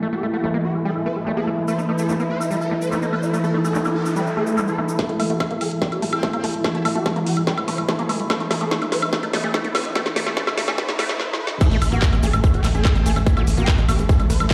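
Intense and driving, this psychedelic trance excerpt in A minor runs at 145 BPM in a straight 4/4, opening with a swarming, detuned rave lead, a bubbling stepped-filter texture, a squelchy overdriven acid bass under a filter sweep, a drum and bass kit with woody snare, metallic hats, handclaps, woodblock and crash, and a warbling lo-fi tape-like pad in the background. A grainy egg shaker joins at 1.7 s, and a very quiet noise sweep creeps in at 3.7 s. At 5.0 s a tight electronic kick enters up front as a build-up gathers filter sweeps, a rising noise riser, a drum fill and brief sustained phrases from a metallic, distorted wobble bass, with a swell leading into the drop at 11.6 s. There a punchy, detuned sequencer bass arrives, and the sidechain pumping, dub echo and large room reverb give the mix a heavy, sound-system weight.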